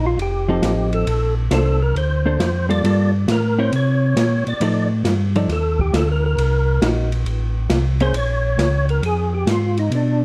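A dark, warm production with light reverb frames this greasy, bluesy soul jazz organ trio clip, swinging in 4/4 at 136 BPM through chords like F7, Bbmaj9 and Cm7b5. A fat, percussive tonewheel organ with third harmonic percussion, chorus vibrato, slow rotary speaker and plate reverb carries the solo melody up front, while a mellow, round second organ with key click and slow rotary lays down the bass. An acoustic drum kit with smooth, dark cymbals, a medium-tuned snare and a boomy kick sits in a small room, and a clean, compressed hollow-body electric guitar adds accompaniment until 8.1 seconds.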